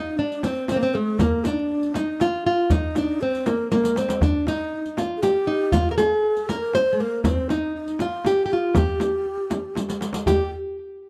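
A dry, close recording with a touch of reverb and a 1970s studio character frames this hypnotic, soulful excerpt of Persian modal ensemble music in a three-beat metre. A full-bodied, fingerpicked nylon-string guitar carries the melody up front, while a breathy, hollow low ney with vibrato shapes a second line alongside it. Tight tombak, a deep frame drum and a compressed riq with dark, saturated jingles join within the first half-second, and drum fills land at 3.7 and 9.8 seconds.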